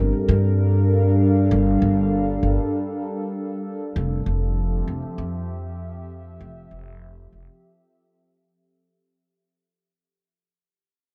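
A warbly, tape-like pad and a pizzicato upright bass open this short ambient dub fragment together, set at 98 BPM in a straight 4/4 and carrying a spacious, meditative mood. The pad holds sustained chords, moving from Gm7 to Fmaj7 at 4.0 seconds, with a slow attack, long release and a nostalgic, lo-fi character built from detuned sawtooth and triangle tones, coloured by chorus, phaser and its own reverb. Beneath it, the gut-strung upright bass sounds woody, dark and thumpy, sitting up front in the mix before dropping out at 7.5 seconds. A moderate amount of huge ambient reverb, with a 4.5-second decay, surrounds the recording and deepens its sense of space. The whole passage fades out across its 8.9 seconds, as it is cut from a longer piece.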